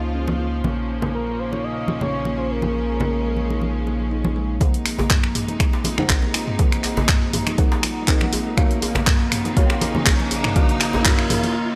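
An expressive, dark-toned synth lead with subtle chorus and delay opens this spiritual, hypnotic afro house excerpt over bright, distant symphonic strings and a smooth synth bass, both pumping to the sidechain, while a woody kalimba arpeggio and ringing, close congas join almost at once; at 4.6 seconds the lead has dropped away and a build-up begins as a soft chord stab with phaser and delay arrives alongside an overdriven, up-front deep house kit of finger snaps, handclaps, hi-hat and toms, a layered electronic kick and a cracking djembe with metal rattles in the background, before a riser and reverse cymbal enter at 7.2 seconds and carry into a break at 11.6 seconds.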